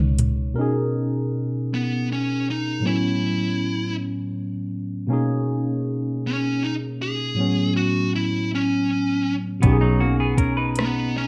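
A drum fill on a soft-kicked, metallic-hatted R&B kit and a round, punchy muted electric bass open this slow, sensual six-eight R&B excerpt in B major at 53 BPM, where a bright, barky tine electric piano with overdrive, phaser and plate reverb carries the Bmaj13 and A69 chords throughout, a fuzzy, up-front lead guitar with plate reverb sings the melody from 1.7 s, and at 9.6 s the drums and bass return as a clean, hollow-bodied semi-hollow guitar adds a second line with spring and plate reverb, the whole heard in a rough, intimate home-demo mix.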